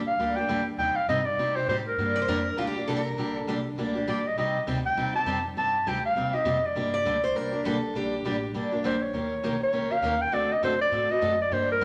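A breathy clarinet carries the melody up front, its jazz-style solo line full of vibrato and scooped notes, set against a bittersweet, swinging backdrop in G minor. This is a brisk acoustic string swing excerpt in the jazz manouche style, moving at 202 BPM in 4/4 with a light swing on the eighth notes. A picked archtop guitar, also up front, supplies the bright, boxy accompaniment with audible finger squeak, while a woody, thumpy upright bass with gut strings plays pizzicato underneath. A fresh-stringed parlour steel-string guitar adds a picked second line in short bursts, first at 2.2 seconds and again at 6.9 seconds. The harmony circles between Gm and Cm before turning through Eb7 to a tense D7b9, and a large studio reverb gives the whole ensemble a roomy, wet sheen.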